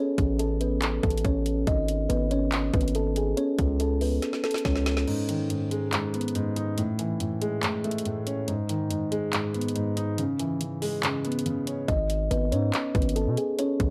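A hollow, woody kalimba opens this brooding, eerie trap excerpt in G# phrygian at 141 BPM with a half-time feel, its mellow plucks filtered and touched by digital delay, as a heavy, saturated 808-style bass with a fast attack and a trap kit with a hard-clipped kick, a woody snare and metallic hats join almost at once. After a drum fill, a dark, vintage grand piano with audible action noise carries a break from 5.1 to 11.9 seconds over the drums, moving through G#m, Amaj7 and C#m7. The kalimba and aggressive bass return at 11.9 seconds, all set in light digital ambience.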